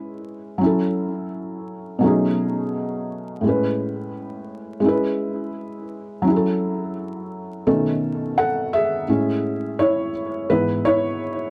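A felt-muted upright piano carries this short hip hop excerpt alone, its thick felt giving each note a soft, muffled tone with short sustain that sits up front and intimate. The mood is melancholic and nostalgic, moving at 85 BPM in 4/4 with a swung sixteenth-note feel. The piano spans from G#2 to F#5, colored by cassette tape character and an analog delay, while a small room reverb and vinyl crackle frame a dark production. The harmony circles through C#m7/G#, F#m7, B13 and Amaj9, returning to C#m7/G#. At 7.7 seconds a new section begins where the piano takes a solo, closing on an Amaj7 and C#m7/G# by 11.5 seconds.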